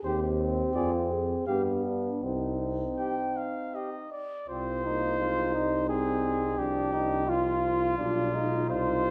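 Classical brass quintet writing sets a noble, triumphant mood in this short excerpt cut from a longer piece, moving in a flexible, rubato triple metre and tuned slightly low, with A at 435 Hz. The warm cornet carries the melody up front, while the flugelhorn sings a second line with a light vibrato and a vintage tone. Beneath them, the French horn sits in the background with a smooth top, the close-miked trombone adds a punchy middle voice, and the bass trombone anchors the bottom with a clear sound. The harmony settles on C minor at 2.2 seconds, and the opening phrase is heard again from 4.5 seconds. A recital hall reverb with a 1.6-second decay surrounds the ensemble in a generous, resonant space.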